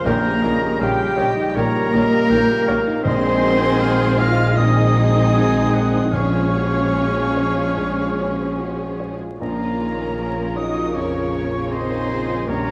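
A small flute group rides high over this longing, moving cinematic passage in Bb minor, its pure tone touched with vibrato and a crisp attack, while a present, mellow solo clarinet and a distant, roomy oboe add further second lines. The melody belongs to a very quiet violin section playing con sordino, dark and veiled with vibrato, and a second violin section with a soft attack adds its own line close by in the background. Violas and cellos, also bowed and muted, supply lush ensemble support, with a studio double bass section anchoring the bottom on a steady low Bb. A French horn section holds sustained chords with a smooth top, and a grand piano accompanies in the background with an intimate, natural sound and audible action noise. Soft-mallet timpani with a round tone enter very quietly from 3.1 to 7.3 seconds. Moving at a rubato 72-81 BPM in 4/4, the harmony travels from Eb7/Bb through Ab/Bb and Db/Bb before settling on Bbm, all set in a moderate scoring-stage reverb with a layer of vinyl crackle over this cut from a longer piece.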